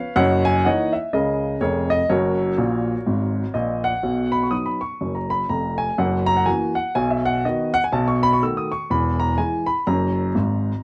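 A woody, intimate upright piano with audible action noise plays alone up front through this exuberant, playful stride jazz excerpt at 124 BPM in B major with a swung feel, dropping fills at 2.6 s and 10.3 s as its long sustain rings into a moderate club reverb.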